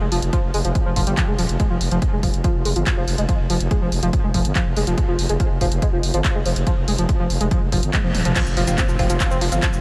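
A straight 4/4 pulse drives this hypnotic, intense peak-time techno fragment: a dry, punchy electronic kick sits beneath an analog drum machine of crash, handclaps, hi-hat, shaker and toms that pumps with sidechain, along with a growling, thick FM bass and an up-front, screaming, guitar-like overdriven synth lead riff carrying chorus, tape character and delay, until a drum fill at 7.9 seconds gives way to a drop at 8.4 seconds that brings in a muted, detuned dub chord stab with phaser and 12-bit sampler grit in the background, a very quiet electronic impact, and a faint swarming drone entering at 9.4 seconds.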